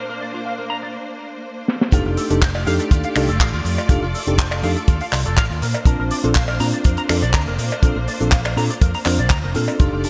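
Bright 1980s-style digital production with light small-room reverb frames this groovy, feel-good nu-disco fragment, where a reedy, mellow electric piano with vintage 12-bit sampler grit, sidechain pumping and digital delay, a distant, lush bowed string section and a twangy, envelope-filtered guitar riff under a filter sweep open together. At 1.7 s a funk kit enters with a drum fill, its high-tuned snare, hi-hat, shaker, finger snaps and handclaps sitting in gated reverb. The fill leads into the drop at 1.9 s, which brings in a dry, tight kick up front and a round, dark fingered bass, with a cowbell joining in the background shortly after.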